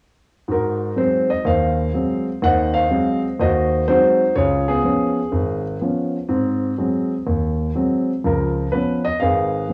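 A solo grand piano opens at 0.5 seconds in a short, sophisticated and playful jazz passage at 124 BPM in 4/4, swung on the eighth notes and set in Ab mixolydian. The instrument sits up front with an intimate, natural tone, short sustain and audible action noise, spanning from Ab1 up to Gb5. Its harmony moves between Ab7 and Db7, giving the bluesy dominant colour that defines the passage. A moderate spring reverb adds a springy halo around the piano, while the home cassette recording lends a tape character. Cut from a longer piece, the fragment ends at 9.7 seconds.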